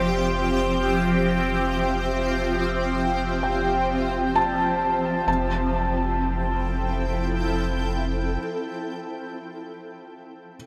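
Drenched in a huge, long-tailed reverb, this peaceful ambient piece in 3/4 opens on a sustained Fmaj9 chord from a bright, ethereal pad with an octave-up shimmer, chorus and phaser, while a felt-muted upright piano plays soft, intimate arpeggios through tape echo, its action noise audible, above a deep, round sub bass that stops at 8.4 seconds and the pad at 8.8 seconds, leaving the piano alone until 10.6 seconds in this fragment cut from a longer piece.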